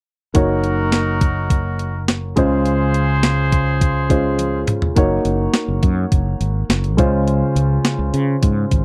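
A straight 4/4 groove at 104 BPM drives this glossy, romantic 1980s-style pop passage, cut from a longer piece, where a thumpy, overdriven 12-bit drum machine with a medium-tuned snare sits up front beside a growly, bright fretless bass and a dark, mellow grand piano moving between Gb6 and Dbmaj7, while a tight, vintage horn section adds clear stabs until 4.6 seconds and a drum fill at 4.4 seconds leads into the second section, heard through a dry, close 1970s-style studio sound.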